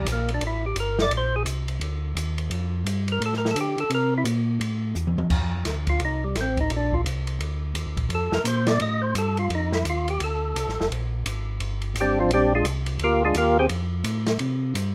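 Greasy and bluesy, this soul jazz organ trio excerpt swings at 172 BPM in 4/4, sitting in F mixolydian. A percussive tonewheel organ carries the melody as a solo, its fat, lightly overdriven tone colored by third-harmonic percussion, vibrato and a slow rotary speaker, and it stops at 13.7 seconds. Beneath it, a second, mellow tonewheel organ plays the bass line with a round, clean sound, audible key click and its own slow rotary speaker, both organs sitting up front in the mix. An acoustic jazz drum kit with dark cymbals, a medium-tuned snare and a punchy kick supports them from slightly further back, in a small-room sound. A drum fill at 5.0 seconds leads into the second pass of the form, where the harmony moves through colorful chords such as Bbadd9, F13 and Bb13 before resolving to Fadd9. Light reverb gives the whole trio a touch of space.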